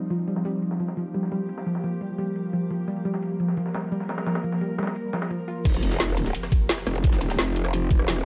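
Light reverb and digital ambience frame this mechanical, futuristic dark technical drum and bass excerpt, where a tense, detuned swarming drone holds sustained chords and a soft, round pluck plays filter-swept arpeggios with lush chorus and delay over a gritty breakbeat sampler-style kit in the background, until the drop at 5.7 s brings in an aggressive, wobbling growl bass, an up-front drum and bass kit with a woody snare and metallic hats, an overdriven, knocking electronic kick and a very quiet impact.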